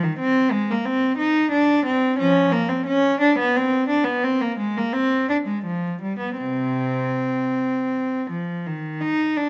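Close, detailed microphones and light reverb frame a single bowed cello with a rich, reedy gut-string tone, played up front in period style. This baroque-style suite movement for unaccompanied cello moves in a dance-like, radiant 6/8 with a supple rubato feel, its line ranging from C3 to Eb4. The passage is cut from a longer piece, with the cello playing alone from 0.0 to 9.5 seconds.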